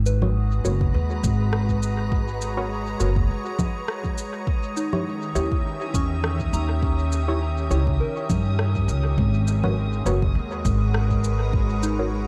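An echo-heavy, meditative ambient dub fragment, where a woody, thumpy pizzicato upright bass sits up front over a deep electronic kick, electronic shaker, congas and rim click, while muted filtered chord stabs with phaser and dub echo, a soft FM synth bell drifting through chorus and tape echo, a bubbling resonant stepped-filter texture and a calm, organ-like chorused pad drift through a spacious G#m11 to D#7b9 movement.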